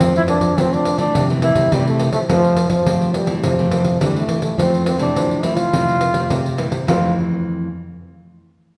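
Festive and playful, this short cut from a longer samba and choro piece moves at 105 BPM in a straight 4/4, settled in F major over an opening Fmaj7 chord. A breathy trombone carries the melody between F3 and F4, its mellow, whispered tone touched with light vibrato and a soft attack, sitting up front in a jazz style even as it sounds roomy and distant. Beneath it, one nylon-string guitar supplies thumb-plucked accompaniment from F2 to C4, with a faint finger squeak in its classical voicing. A second nylon-string guitar handles the bass from F2 to F3, fingerpicked on fresh strings with a deep, full-bodied sound. A jingly pandeiro played with soft hands adds compressed, saturated percussion until 7.0 seconds, while the accompanying guitar rings on until 7.7 seconds. The whole group sits in a wet recital hall reverb with a church or concert hall character.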